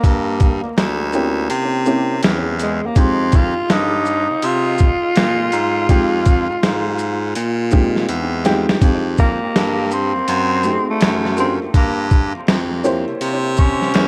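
A growling, breathy tenor saxophone carries the melody with dub echo over a bright, punchy baritone saxophone bass line and a gritty, compressed boom bap sampler-style drum kit with a thumpy kick, before a dark, woody, slightly detuned upright piano with dub echo joins at 1.1 seconds, and after a drum fill the tenor takes a raspy solo from 8.8 seconds in this cool, nocturnal jazz-hop fragment at 82 BPM with a swung feel, light reverb, an echo-heavy mix and vinyl crackle.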